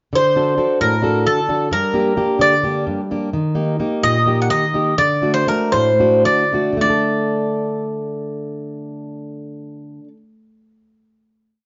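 Cool and bittersweet, this brief Greek folk piece for a bouzouki band moves in a straight 7/8 metre at 209-262 BPM counted in eighths, set in D phrygian dominant. The bouzouki carries the modal, ornamented melody up front, its metallic double strings with some octave-doubled courses given a plate reverb. Beneath it, a fingerpicked, plugged-in steel-string jumbo acoustic guitar plays an oompah accompaniment of bass notes and chord figures, full-bodied and also up front. The harmony runs D, Gm, Eb and back to D, with the tempo slowing from 3.3 seconds until the piece settles on a final D5 chord at 6.8 seconds. The production is dark and warm, with a moderate studio room sound around both instruments.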